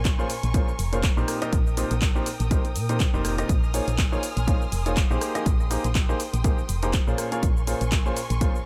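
Piano house with a bittersweet, energetic swing, cut from a longer piece, where a clear, polished baby grand piano riff with delay and sidechain pumping plays alongside a dry, up-front punchy electronic kick, an analog drum machine's handclaps, hi-hat, rim click and shaker re-recorded in a small room, a round, dark FM bass, and lush, vibrato-rich bowed violin chords that pulse along with the bass through the Dbmaj7/Bb, Cm7/Bb and Dbmaj9 changes.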